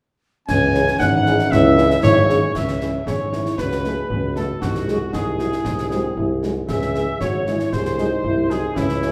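Heard from further back in a large, reverberant room, this short cut from a stern, martial wind-band march in C# minor moves at 116 BPM in a straight 2/4. A mellow cornet carries the melody with light vibrato, joined on second lines by a clear woodwind section, a distant euphonium and a hollow wooden piccolo that drops out at 2.6 seconds, while a very quiet trombone section holds smooth-topped chords and a dark French horn section joins at 0.7 seconds. Up front, a warm tuba with a soft attack anchors the bass beneath concert snare, bass drum and bright clash cymbals.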